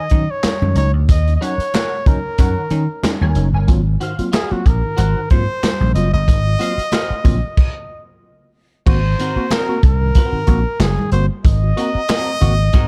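Funk at 93 BPM in 4/4, with a lightly swung sixteenth-note feel and a driving, hypnotic mood, tuned slightly flat to A4 = 439 Hz and cut from a longer piece. Up front, a crunchy breakbeat kit with a tight kick, gritty saturation, dark cymbals and handclaps sits beside a growly, punchy slap bass. Very quiet, close and dry congas add bright, soft-handed color underneath. A worn, slightly out-of-tune tine electric piano plays stabs through a combo amp over Ebm7 moving to Ab13. A clear, close-miked trumpet carries the melody with light vibrato, and a twangy, compressed clean guitar with analog chorus joins at 1.4 seconds. After a stop at 7.6 seconds, the groove resumes on Ab9 in a new section at 8.9 seconds, all in a small room reverb.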